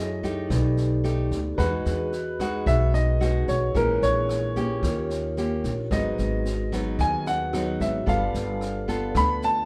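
A relaxed, breezy bossa nova fragment at 111 BPM in a straight 4/4 opens with a smooth, vintage-toned grand piano carrying the melody up front. Beneath it sit a full-bodied, fingerpicked nylon-string guitar with fresh strings and audible finger squeak, a metallic, ringing vibraphone struck with medium mallets and its motor off in a boxy small room, and a woody, growly pizzicato upright bass that sounds thumpy and close. At 0.2 seconds a distant, roomy brush kit joins with a high-tuned snare, rim click and boomy kick, its top end rolled off. The harmony drifts from F#m9 and B7alt to Emaj9, then through A#m7b5 and D#7 to G#m7 before landing on G9. Light reverb gives the whole a gentle, warm air, and the passage is cut from a longer piece, ending at 9.7 seconds.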